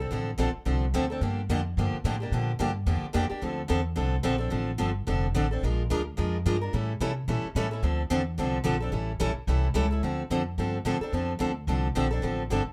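This is a fragment of acoustic string swing in the jazz manouche style, fiery and virtuosic, moving at a brisk 218 BPM in 4/4 with a swung eighth-note feel in D minor. A picked steel-string acoustic guitar carries the accompaniment, its bright, boxy parlour tone sitting up front with fresh strings and audible finger squeak. Beneath it an upright bass, plucked pizzicato on gut strings, gives a woody, thumpy low end. The harmony circles through minor seventh and ninth chords with tense altered dominants, returning to Dm7 at 10.0 seconds as the opening section repeats. Light reverb and a dark, warm production surround the pair, and both parts run together through to the cut near 12.7 seconds.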